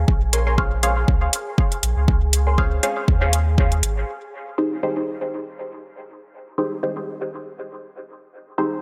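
A swung 4/4 pulse at 120 BPM drives this nocturnal, deep dub techno excerpt. An overdriven kick and metallic, overdriven hi-hats sit up front over a clean, dark sine sub bass, while a breathy, wind-like noise texture drifts in the background, with the bass and texture pumping to the sidechain. Two filtered, detuned chord stabs play over Bbm9 through phaser and dub echo: the mellow up-front one adds lush chorus and stops at 2.6 s, and the muted one in the background carries 12-bit sampler grit, continues into Ebadd11, and plays alone from about 4.1 s to 8.8 s.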